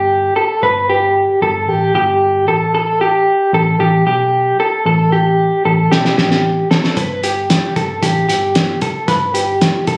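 Jangly indie pop with a youthful, nostalgic mood, cut from a longer piece and captured on a phone in the room with wet studio reverb, where a dark, slightly broken-up electric guitar through a small old amp plays up-front arpeggios with tremolo and slapback echo over a round, foam-muted picked electric bass, and a muffled, cloth-damped drum kit with a fat snare and tight kick joins them with a fill at 5.9 seconds.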